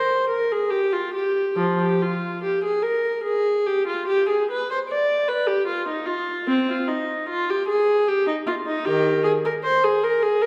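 A wet recital-hall reverb places the listener further back in the room, framing this short excerpt of a baroque-style suite movement for unaccompanied viola. The solo viola plays bowed throughout, with a gut-string, period-style tone that is reedy yet smooth at the top, ranging from Eb3 to D5. At 74 BPM in 3/4, the flowing, solemn line moves with uneven beats and free rubato.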